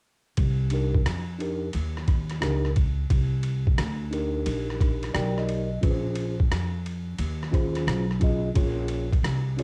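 Smoky and mellow, this short cut of jazz-hop sits at 88 BPM in 4/4, with a 66% swing on the sixteenths and a C phrygian color. A sampler-style boom bap kit comes in at 0.4 seconds, compressed, pitched down and gritty, with a thumpy kick, hi-hat, ride cymbal and rim click, re-recorded in a large room and given cassette tape character. An upright bass enters alongside it, played pizzicato on gut strings with a woody, acoustic tone between Bb1 and F2. A mellow tine electric piano joins at 0.7 seconds, clean and heard through its built-in speakers with a tape-worn edge, and it plays a fill from 4.8 to 5.8 seconds. The harmony rests on Cm9 before moving to Bbm9 at 5.8 seconds. The drums, bass and piano all sit up front in a close, homespun cassette recording with little reverb.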